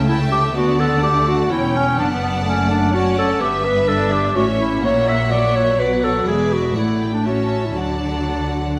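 Spirited and cheerful, this brief excerpt from a quick classical-period movement in D major at 126 BPM in 3/4 sets a clear, distant symphonic violin section on the melody over a second chamber violin line, a rich, focused viola accompaniment, a bass of expressive, close double basses and soft-attacked cellos with portamento, and a roomy solo clarinet weaving its own second line from 0.1 seconds, all bowed strings carrying vibrato in a wet recital hall reverb.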